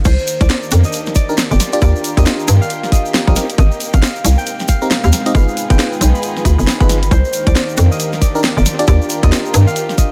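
The hollow, knocking FM bass stands out up front, punchy and bouncy with a fast attack and tube saturation, riding a tight, layered electronic kick through this skippy, soulful two-step UK garage excerpt at 136 BPM in C minor, swung at 61% on the 16ths. A produced garage kit adds a cracking snare, hi-hat and crash cymbal through analog delay, while a grainy, band-limited egg shaker ticks along underneath. A bright, ringing concert harp carries the melody between C5 and B5 with tape echo, and from 1.3 seconds a glassy FM electric piano adds bell-like stabs with chorus and analog delay. In the background, a bowed chamber violin section holds soft, sul tasto chords with light vibrato, and a deep, moody ambient pad evolves slowly with chorus and reverb, both pumping against the sidechain. The chords move from Cm7 through Ebmaj7 and Abmaj9 to a tense G7b9b13 before returning, all set in an echo-heavy digital ambience.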